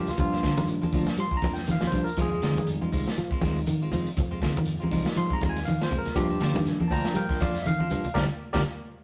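A driving 121 BPM afrobeat groove in 4/4, swung on the sixteenths, sets an intense mood in this short cut from a longer piece, moving between Gm7 and Fm7. Up front, a crunchy breakbeat drum kit with a tight kick, medium-tuned snare and hi-hat sounds gritty and saturated with a rolled-off top, while hard-handed, low-tuned congas sit close and dry in the background and a very quiet, grainy shekere adds texture. A fingered electric bass stays dark and round beneath, and a twangy, slightly broken-up electric guitar picks arpeggios in the background as a clean semi-hollow guitar adds warm hollow-body stabs. The featured voice is a barky tine electric piano, lightly overdriven through a combo amp and placed up front, soloing over the whole passage. The band hits an accent from 8.2 seconds, and light reverb and tube saturation give the whole take the rough feel of a rehearsal room.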